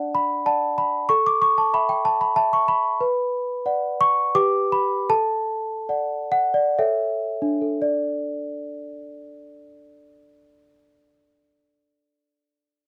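Set in a dark production with light reverb, this short fragment of a classical lullaby features a solo celesta, bell-like and delicate with a sweet tone and placed up front, drifting innocently and dreamily in a rubato triple metre, slowing between 2.0 and 7.8 seconds before a new section begins at 7.8 seconds.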